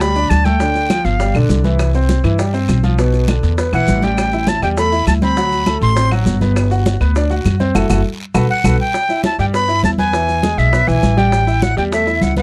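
A passionate, danceable salsa in E minor at a brisk 202 BPM opens with an airy, reedy flute phrase over a bright, polished grand piano, a thumpy, gut-strung upright bass up front, and thick-skinned congas, while round low-tuned bongos, raspy guiro and grainy maracas sit in the background, with woody claves joining them a moment later. The flute returns in short vibrato-laden phrases with a crisp, chiffy attack, and the whole band hits an accent from 7.8 to 8.9 seconds before the flute carries on to the end at 12.4 seconds. The sound is dry and close, with the intimate feel of a 1970s studio session, and this is a section cut from a longer piece.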